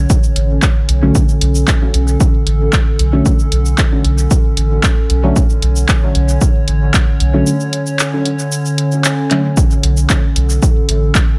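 Dub techno at 114 BPM in B minor, this nocturnal, hazy fragment of a longer piece rests on a single Bm9 chord, held by a warbling, lo-fi tape-like pad with chorus and its own reverb that pumps with sidechain compression. A round, soft sub bass sits up front beside a punchy electronic kick, while a tape-warm analog drum machine adds handclaps, hi-hat and shaker, both drum parts re-recorded in a small room. From 1.0 to 9.5 seconds a dark, nasal chord stab with a plucked filter, phaser and dub echo colours the groove, with a break from 7.5 to 9.6 seconds, all set in light digital ambience.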